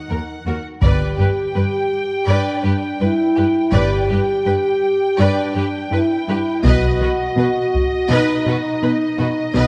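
A mellow, up-front French horn section holds sustained chords through this relentless, epic orchestral film-score excerpt at 82 BPM, as a distant, lush violin section carries the melody over a soft-attack second violin line, an intense viola accompaniment and a smooth cello bass. At 0.8 seconds a close double bass and heavy-stick taiko join, and the taiko returns at 6.6 seconds. The music moves through D#m, G and B chords in a dark scoring-stage reverb before a huge cymbal swell barely surfaces at 9.6 seconds.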